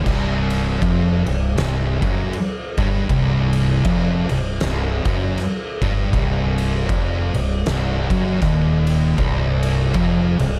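A growling fingered electric bass sits up front, bright and overdriven, holding the low end of this ominous, sludgy stoner and doom metal excerpt in C minor. Two thick fuzz guitars, picked and distorted, each play a riff in the background, one dark in tone and the other warm. An oversized low-tuned acoustic drum kit, recorded in a bright stone room with a pumping room sound, drives the 79 BPM groove in 4/4 with a swung eighth-note feel, pairing a punchy kick and fat snare with dark crash and ride cymbals. The whole passage rests on a single C minor chord across its 10.6 seconds. The production is dark with little reverb, giving the heavy parts a close, dense weight.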